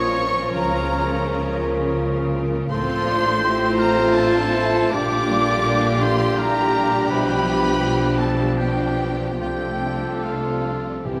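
Classical slow romantic movement for symphony orchestra in F major and 3/4, lyrical and warm at a rubato 71-86 BPM, where an expressive violin section sings the melody with vibrato and portamento over background second lines from a distant lush violin section, a present clarinet, a hollow flute group and a close-miked oboe, while a clear trumpet adds soft-attacked stabs, a bassoon, close viola section, very quiet roomy French horns, a ringing thumb-plucked harp, smooth cellos and double basses fill out the accompaniment and bass, a timpani stroke arrives at 11.1 seconds, and a wet concert hall reverb surrounds the whole ensemble.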